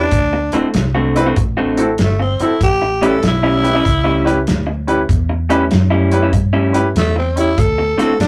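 Rollicking and laid-back, this electric blues shuffle in A mixolydian swings at 96 BPM in an 8.3-second excerpt cut from a longer piece, with a raspy, growling tenor saxophone soloing up front from the start over chords moving from D7 to A7 and back to D7 at 7.6 seconds. A round, foam-muted fingered bass and a dark soul drum kit with a tight kick and medium-tuned snare anchor the groove, while a slightly broken-up, lo-fi electric guitar plays a picked riff and a polished grand piano adds present accompaniment. The rough rehearsal-room sound carries tube saturation and a short, wet booth ambience.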